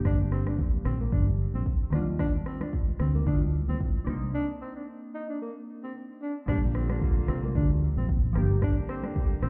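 Swung sixteenths at 112 BPM drive this romantic, breezy afrobeats excerpt in Bb major, where an up-front electronic drum kit with a deep kick, rim click, shaker and crash and a dark, round, foam-muted fingered bass sit beneath glassy, chorused digital keys with a filter sweep, a breathy, close-miked tenor saxophone sings a jazz-style solo melody with scooped notes and delay, very quiet damped congas add bright soft-hand color, and a mellow horn section with light vibrato joins at 6.5 s after a break from 4.3 s, the whole mix heard muffled through a wall in club reverb.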